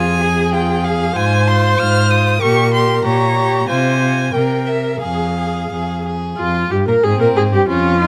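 In a flexible, rubato two-four, this stormy, dramatic classical-period movement for string quartet is cut from a longer piece, with all four bowed players sounding together from 0.0 to 8.1 s and a new section arriving at 6.4 s. The first violin carries the melody with focused vibrato and a smooth top, the second violin holds an even inner line close beneath it, the viola gives a rich accompaniment, and the clear cello sits up front on the bass with light vibrato. Light reverb and close, detailed microphones keep each instrument distinct.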